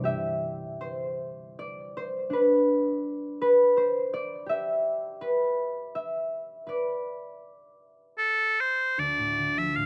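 Dry and close, this outdoor recording places both instruments up front with little reverb and open air around them. It is a mournful, longing piece of Celtic folk in a loose three-beat metre, played with a free, rubato feel. A concert harp carries the opening alone, its warm, thumb-plucked acoustic tone ringing across a span from D2 up to G5. At 8.2 seconds loud bagpipes enter with the melody, a bright, piercing, continuous line that sits between A4 and F5. The harp's open, chordless passage settles onto a D minor chord at 9.0 seconds, just before this short cut from a longer piece ends.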